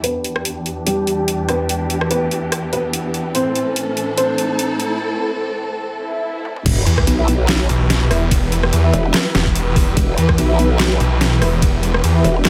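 A snarling, distorted sawtooth bass and a wobbling, detuned growl bass hit at the drop around 6.7 seconds in this menacing, heavy wobble dubstep excerpt, joined by a knocking overdriven kick and mellow brass stabs, after a build-up where a dark, intimate baby grand piano melody and lush bowed strings move under filter sweeps, the strings pumping under sidechain, over an overdriven dubstep kit with deep snare and bright hats, and a riser, swell and sub drop sit in the background.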